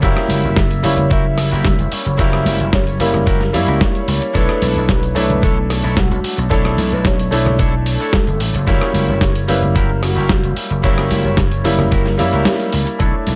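Nu-disco at 111 BPM in 4/4 with a straight, groovy and sensual feel, this short cut from a longer piece sits on a dry, gritty hardware sound, where an up-front, thumpy overdriven electronic kick and a dusty soul sampler-style kit of hi-hat, rim click and medium-tuned snare drive under a punchy, amped vintage slap bass running from F#1 to F#2. A brilliant baby grand piano pumps with sidechain in accompaniment, a clean picked electric guitar plays a riff through subtle chorus and a low-pass filter, ringing cabasa and hard-handed congas sit in the background, and a soft, round octave-layered synth lead with vibrato, chorus and analog delay carries the melody until 12.5 seconds. The chords move from F#7b9 to Bm11 at 4.4 seconds and back, and at 12.5 seconds the band hits an accent as the kick drops out.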